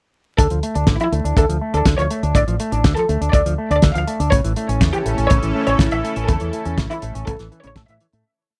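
A four-on-the-floor kick and a disco machine beat of fat snare and closed hi-hat drive this brief, melodramatic, danceable italo disco piece at 122 BPM in D harmonic minor, moving from Dm to A, while an up-front fingered electric bass with an envelope filter runs a sequenced sixteenth-note line underneath. A rich chamber violin section carries a smooth, vibrato-laden repeating riff melody with tape echo over a dark, compressed four-step guitar arpeggio treated with envelope filter, low-pass filter, gritty 12-bit sampler texture and tape echo, and a lush, detuned unison pad with chorus and phaser joins with sustained chords at 4.6 seconds. The dry, close 1970s-style recording carries vinyl crackle, and the piece fades out from 5.6 seconds.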